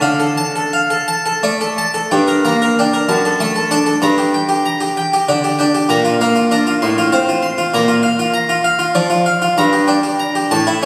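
Classical baroque-style suite movement in G minor for solo harpsichord, unfolding in a solemn, flowing 6/8 at a rubato 56-67 BPM counted in dotted quarters, with harmonies that open on D minor, settle into G minor, and pass through B-flat before returning home. The Italian-style harpsichord sounds plucked, brilliant and full, close-miked and up front with bright octave strings, spanning F#2 to C6. A long concert-hall reverb surrounds it, while the phone capture adds a murmur of club ambience to this brief excerpt cut from a longer piece.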